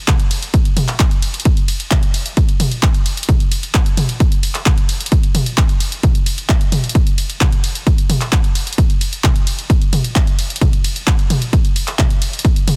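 Industrial and relentless, this techno excerpt in straight 4/4 is driven by a heavy, layered electronic kick drum with a tape-warm weight that sits up front from 0.1 seconds. Alongside it, a punchy analog drum machine supplies handclaps, hi-hat, ride cymbal and toms, its hats, toms and cymbals pumping under sidechain compression. The sound is dry and close, with both drum parts re-recorded in a small room and a dense, heavily limited modern master.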